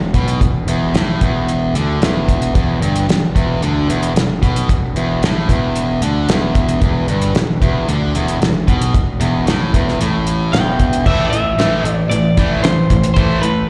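A bright, overdriven electric guitar riff with slapback echo drives this gritty classic rock excerpt, sitting up front beside a fuzzy, picked electric bass and a cloth-damped, thuddy drum kit with dark cymbals, a fat snare and a tight kick. A slightly broken-up, compressed lead guitar with slapback echo enters at 10.5 seconds with a melody, and a very quiet distorted guitar riff joins at 11.1 seconds as the harmony moves from E5 to Am. The whole performance sounds like a live gig heard through the venue's PA, with a recital hall reverb.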